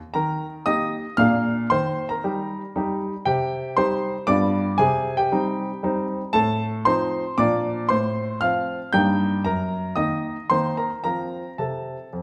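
A playful, elegant classical-period piano sonatina in 3/4 at 116 BPM, this short excerpt cut from a longer piece sits in Eb major and moves through a graceful progression that passes through C minor and closes on an F chord at 11.0 seconds. A clear, natural baby grand piano plays solo from 0.1 to 12.2 seconds, spanning F2 to G6 with a short sustain and an up-front presence. The instrument is set in a wet recital hall reverb with a 1.5-second decay, lending the crisp tone an airy sense of space.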